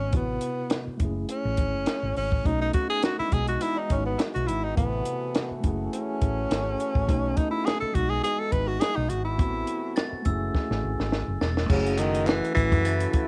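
A breathy tenor saxophone with scooped notes and vibrato carries the melody from the outset over a mellow tine electric piano, a round, punchy hollow-body electric bass and a compact cocktail drum kit with a high-tuned snare and rolled-off top, setting a romantic, lushly warm 1970s-style soul groove at 104 BPM with a light sixteenth-note swing. Soft-attack French horns slip in behind at 2.4 seconds with sustained chords through a progression of lush minor-sixth, ninth and major-ninth harmonies. A sparkling, bell-like glockenspiel enters at 10.0 seconds, a drum fill leads into a new section, a hollow group handclap sounds in the background, and octave-doubled horn stabs arrive at 12.8 seconds, all under light reverb in this short excerpt.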